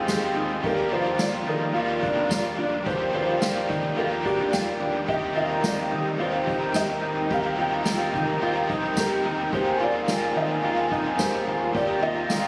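Blissful and dreamy, this dream pop excerpt moves at 108 BPM in a straight 4/4, its chords drifting from Abmaj7 through Gm7 and Cm7 to Bb7sus4, each over an Eb bass note. A soft, felt-muted upright piano carries the boxy, intimate melody through delay, framed by a reedy, breathing pedal harmonium, a clean, fingered electric guitar playing arpeggios with chorus and delay, a double-tracked overdriven guitar with tremolo and chorus, and a round analog bass with an evolving, ring-modulated tone. Soft mallets on a drum kit with a boomy kick, dark cymbals, snare and tambourine keep time, and the piece was captured on a phone in the room, with compression and light studio reverb.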